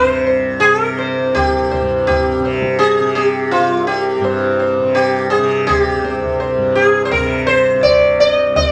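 A plectrum-plucked sitar opens this meditative, introspective Hindustani classical excerpt up front, its round tone shimmering with sympathetic strings, over a softly plucked tanpura drone whose low buzz hums beneath. At 0.6 seconds, low-tuned tabla enters in the background with a ringing, small-room sound, settling into a straight 4/4 pulse at 83 BPM. Moderate studio reverb adds a gentle sense of space, and the instruments are tuned slightly below standard pitch, to A4 = 438 Hz.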